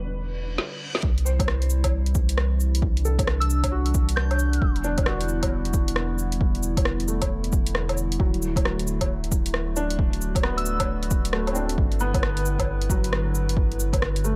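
Future garage at 134 BPM with a 16th-note swing, rainy and wistful, this excerpt opens on a very quiet, flickering granular texture and a reverse cymbal with a drum fill before the punchy electronic kick lands at 1.0 s, joining a deep house kit of woody snare, dark hats, cabasa, rim click and woodblock under low-pass filtering, while a felt-muted upright piano with tape echo, a warbling lo-fi pad with chorus, and a round sine sub bass all pump against the kick through Em7, C, Dadd9 and G6, and a soft, pure FM bell with chorus, 12-bit grit and delay surfaces briefly at 3.4 s in light reverb.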